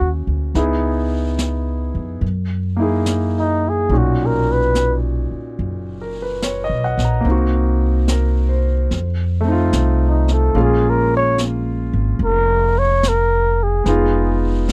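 A bucket-muted trumpet opens this wistful, intimate jazz ballad in Bb minor, its dark, veiled tone carrying the melody with a light vibrato over a clear grand piano and a woody upright bass. Brushed drums join at 0.6 seconds, the high-tuned snare and hi-hat sounding natural and set in a small room behind the other players. The tempo is a slow 72 BPM in swung 4/4, and the harmony drifts through rich extended chords such as Gb69, Gb13 and Bmaj7, later moving to Bbm7 and closing on Fm7b5. The trumpet falls silent for a stretch and returns at 10.1 seconds, leaving the piano's intimate voicings, with their faint action noise, and the thumpy, gut-strung pizzicato bass to hold the space in between. Piano, bass and trumpet all sit up front in a dry, close recording with a 1970s studio character, in this short passage cut from a longer piece.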